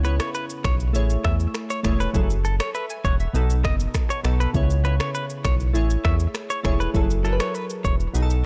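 Afrobeats at 100 BPM with a sultry, smooth feel, this short excerpt sets a deep, round analog bass up front under an electronic afro-pop kit of deep kick, finger snaps, rim clicks and shaker, while glassy digital keys with chorus, phaser and a filter sweep lay bright, decaying chords over a C#m7–Amaj7–F#m9–B7 cycle, and a twangy, compressed clean electric guitar picks a tape-echoed riff until 7.9 seconds, all in a dark, dry production.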